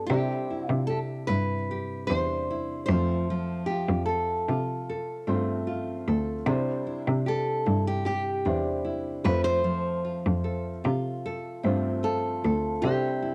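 Heartfelt and carefree, this acoustic pop fragment from a longer piece sways between Cadd9 and F chords. A bright, fingerpicked nylon-string guitar with fresh strings carries the melody up front, while a second, full-bodied nylon-string guitar fingerpicks the accompaniment, and a woody upright piano with audible action noise adds intimate, vintage colour from 0.1 s. A rich, bowed cello sits forward in the bass with expressive vibrato and portamento, all set in moderate spring reverb on a homespun cassette recording.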